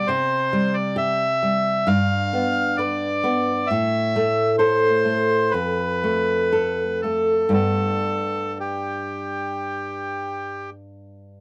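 A dry, close studio sound with a 1970s character frames this serene, romantic excerpt for bandoneon and classical guitar in a slow, rubato 4/4 around 56-68 BPM, where the reedy, vintage-toned bandoneon sings the melody up front until 10.7 seconds while the warm, fingerpicked nylon-string guitar accompanies beside it through chords of C, G7, F and G and rings on alone to 11.4 seconds.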